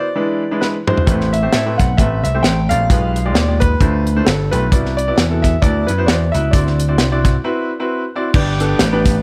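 Uptempo gospel in G major at 132 BPM, with a swung eighth-note feel and an uplifting, jubilant mood, cut from a longer piece. A concert grand piano with a deep, natural tone carries the melody from the start, while a brilliant baby grand with long sustain supplies the accompaniment, moving through rich chords such as Am9, G7b9/B and Cmaj9#11. A tight funk drum kit enters at 0.6 seconds with a fill, its high-tuned snare and tight kick sitting up front with a rolled-off top, and an amped vintage slap bass joins at 1.1 seconds to drive the low end. After a break starting at 7.4 seconds, a distant, roomy horn section takes over the melody at 8.3 seconds, landing on a G chord in a jazz style. The sound is dry and close, with the drums and bass the most forward parts of the mix.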